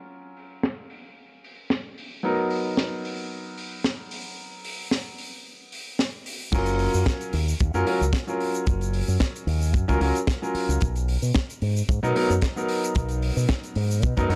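Nu-disco at 112 BPM in F# major, sunny and feel-good with a light swing on the sixteenths, this excerpt opens on a brilliant, up-front concert grand piano with sidechain pumping and tape echo, moving between F#maj7 and Bmaj7 while a tight funk kit of high-tuned snare, hi-hat, shaker and crash enters at 0.4 seconds under a filter sweep. At 6.5 seconds the drop arrives as a tight, dry kick and a warm, up-front fingered electric bass with an envelope filter and tube saturation join in. The sound is gritty and close, with little reverb and the grain of cassette tape and transformer saturation.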